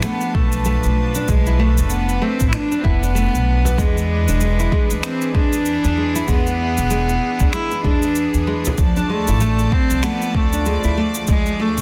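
A dense, heavily limited modern mix with light studio reverb frames this hypnotic, meditative organic downtempo excerpt at 96 BPM in 4/4, swung on the 16ths and moving from Bm7b5 to E7 to Dm. Up front, a single bowed cello sings a pure, floating sul tasto melody with tape echo over a rich, earthy chamber string section holding sustained chords with light vibrato and sidechain pumping, while a full-bodied nylon-string guitar fingerpicks arpeggios through its own tape echo. Produced finger snaps and cabasa with a softly clipped snare play from the start, a woody pizzicato upright bass with sidechain pumping and a deep electronic kick enter at 0.3 seconds, and a large, saturated frame drum sounds in the background at 3.6 and 8.7 seconds.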